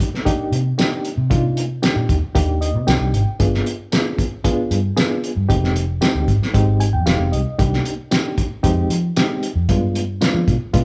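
A muffled, lo-fi room sound with light reverb frames this smoky, brooding straight-eighth soul blues excerpt in C minor at 114 BPM, cut from a longer piece, with the band playing live together. A cloth-damped, thuddy drum kit sits up front with a fat snare, tight kick, hi-hat and tambourine, gritty and saturated with a rolled-off top, while a dark, round, foam-muted fingered electric bass enters at 0.5 seconds with a punchy, amped tone. A clean, reedy electric piano with fast tremolo comps through Cm7, G7b9 and Fm7 changes and steps out with short fills at 2.4 and 6.5 seconds.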